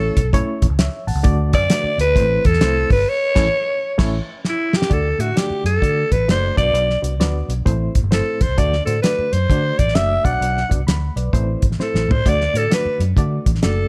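A swung 131 BPM groove in 4/4 drives this uptempo 1960s-style soul piece. A thuddy, cloth-damped drum kit sits up front with a fat snare, tight kick and dark cymbals, while a round, foam-muted fingered electric bass holds the low end, and a barky, reedy electric piano with light overdrive and fast tremolo accompanies a breathy, raspy alto saxophone melody with vibrato and a smooth top. The band hits an accent from 3.1 to 4.9 seconds, capped by a drum fill, before the tune moves into its second section, and the dry sound keeps the mood warm and uplifting.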